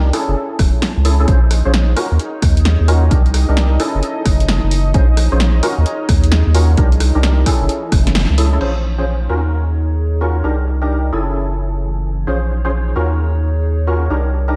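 A saturated sub bass sits up front through this soulful, late-night two-step UK garage excerpt, deep and thick with a fast attack and sustained notes, carried at 131 BPM with a swung 16th-note feel. Hollow, organ-like stabs with a percussive, mellow tone play throughout, colored by ensemble chorus and tape echo over a loop of minor seventh chords moving through Gbm7, Bbm7, Ebm7 and Cm7. A punchy analog drum machine brings hi-hat, rim click, snare and crash cymbal, low-pass filtered and tape-tinged as if re-recorded in a small room, joined by an electronic kick; the band hits a shared accent at 8.1 seconds, and the drums drop out by 8.7 seconds. Behind them, a smooth, detuned sawtooth pad with chorus and sidechain pumping holds sustained chords in the background until 8.6 seconds. A warbling, nostalgic, lo-fi pad with phaser, chorus, built-in reverb and its own sidechain pumping drifts in at 1.0 second and stays to the end, leaving the bass, stabs and that hazy texture to carry the closing stretch. 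Light digital ambience gives the whole mix a gentle sense of space.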